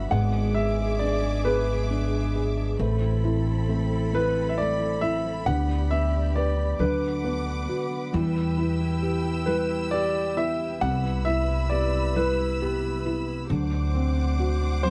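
In a slow, swaying 6/8 at 45 BPM counted in dotted quarters, this heartfelt pop excerpt moves with a straight, unhurried lilt. A clear, polished concert grand piano carries the melody between B4 and F#5, its long sustain and audible action noise sitting present and intimate in the mix. Beneath it, a soft felt-muted upright piano plays mellow accompaniment, while a fingerpicked steel-string dreadnought guitar traces full-bodied arpeggios in the background. A lush, bowed string section holds sustained chords with vibrato, and a growly pizzicato upright bass sits up front as the loudest part. The dry, close 1970s-style studio sound keeps every touch near, as the harmony drifts from E7/G# through Amadd9, Em and Cmaj7 before resting on D7 at 13.5 seconds.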